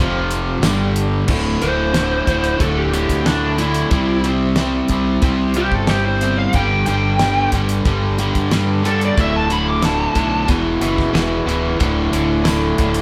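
Classic rock at 91 BPM with a confident, driving feel, as two overdriven electric guitars, one up front and one scooped in the background, play riffs over fuzzy, punchy fingered bass, a dry, damped 70s drum kit with a fat snare, a very quiet flute-like tonewheel organ through a slow rotary speaker, and brief jingly tambourine, while a dark, smooth overdriven lead guitar solos from 1.6 to 10.5 seconds over Dsus2, C, G and E chords, all in a moderate large-studio reverb that sounds like a band playing live in one room.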